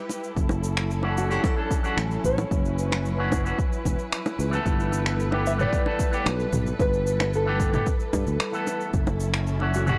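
Relaxed and warm, this sunset chillout excerpt in D major moves at 112 BPM in a straight 4/4, with distant, dark bowed chamber strings holding sustained chords from 0.0 s, a deep house drum kit of cabasa, finger snaps and toms alongside round, low-tuned bongos from 0.1 s, an overdriven electronic kick and a growly, up-front fretless bass with tube saturation arriving at 0.4 s, and a twangy envelope-filtered electric guitar and a thumb-plucked nylon-string guitar melody, both with analog delay, joining over Dmaj9/F# and G69 chords in a dry, gritty small-room recording.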